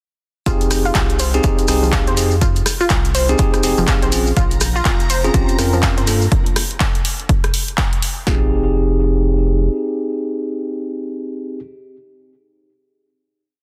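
Deep house at 123 BPM in F minor with a 60% swing on the sixteenths, deep and hypnotic, opening straight into a drop at 0.5 seconds where a punchy four-on-the-floor kit kick and snare sit up front beside an analog drum machine's clap, rim, and open and closed hats, grainy maracas shake in the background, a rubbery, hollow square bass pumps a dark syncopated riff, a warbling lo-fi pluck cycles a 16-step arpeggio through chorus, cassette tape and tape echo, bell-like tine electric piano stabs ride the Fm7, Bbm7 and Gm changes, and a silky string machine holds a single high note from 4.4 to 6.3 seconds before the electric piano rings out on a final Fm7 chord to 11.6 seconds.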